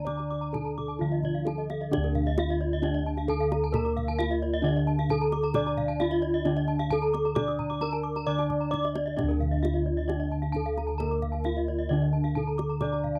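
Bossed bronze gongs sit up front in this brilliant, shimmering Balinese gamelan passage, giving a round, dark, smooth bass with a beating tone that reaches from D2 up to D5. Above them, a wooden-mallet metallophone carries the melody between D4 and D5 in D pelog, its paired tuning producing shimmering beats, while a lower horn-mallet metallophone plays a bright, ringing accompaniment. Two more horn-mallet metallophones spin arpeggios: one has a vintage, band-limited colour, and the higher one, from D5 to D6, adds sparkle through its own paired-tuning shimmer. A kendang, played with soft hands, keeps a tight, close pulse in the background at a steady 132 BPM in straight 4/4. The dry, close studio sound has a 1970s character, and this fragment of a longer piece moves after a brief opening into a new section at 1.9 seconds that runs to the end.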